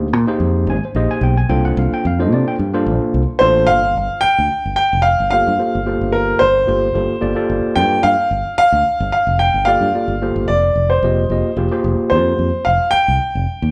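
Nocturnal and intense, this electric jazz fusion excerpt opens with a gritty, overdriven tine electric piano and a round, punchy fingered electric bass up front over suspended chords, before a boxy grand piano enters at 3.4 seconds with the melody as the harmony shifts to minor eleventh chords, the band sounding live in one large studio room with moderate reverb.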